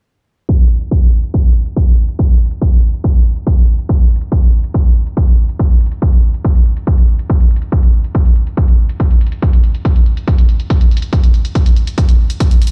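The recording sounds as though it is played through a big sound system in a bare room, with a large studio reverb and a low-pass filter shaping the whole mix, and a filter sweep runs from 0.5 to 12.7 seconds. This is a short cut from a longer piece of driving peak-time techno, dark and intense, moving at 141 BPM in a straight 4/4. The electronic kick drum dominates: a heavy, layered, produced kick with a tape-warm character, re-recorded in a small room and sitting up front. Beneath it, a layered electronic hi-hat supplies warm, tape-tinged hats, also re-recorded in a small room and placed far lower in the mix than the kick. Both drum parts enter at 0.5 seconds and carry the single section to its close, with the kick stopping at 12.5 seconds and the hi-hat at 12.7.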